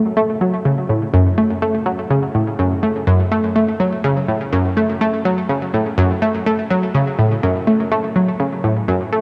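Expansive and mysterious, this ambient excerpt in F# minor moves at 124 BPM in a straight 4/4, with a lone analog pluck carrying the whole 9.2 seconds across a range of F#2 to A3. The pluck sits up front, round and detuned with a fast filtered attack, short decay and a noise layer, thickened by chorus and delay. A huge, wet reverb with a 7.5-second tail surrounds it, and a cassette-tape sound dulls the top end.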